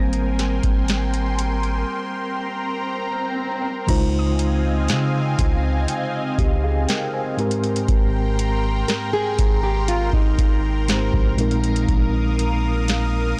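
Smooth and dreamy, this slow contemporary R&B cut at 60 BPM in Ab major sets a mellow tine electric piano against a lush, detuned unison pad with chorus and phaser, a deep sine-like 808-style bass, a booming dry analog drum machine with crisp snare and metallic hats, a soft round pluck with chorus and delay in the background, an electronic swell from 2.0 to 3.9 seconds, and a bright fingerpicked nylon-string guitar with delay arpeggiating from 8.9 seconds, all in a blown-out, overdriven recording moving from Abmaj9 to Dbmaj9 and on to Bb7sus4.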